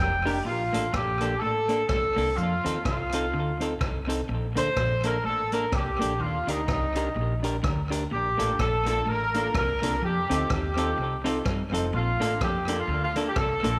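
A brief vintage trumpet note opens this joyful, upbeat ska excerpt in Bb major at 126 BPM with swung eighths, over a slightly broken-up picked guitar riff carrying spring reverb and tape echo and a growly pizzicato upright bass. A dark semi-hollow guitar with tremolo and tape echo and a distant, roomy big-band drum kit with punchy kick, hi-hat and rim clicks enter at 0.3 s, before a mellow, up-front horn section takes the melody at 0.5 s. An intimate upright piano's woody stabs return in the background from 8.4 s, all inside a moderate echo-chamber studio ambience.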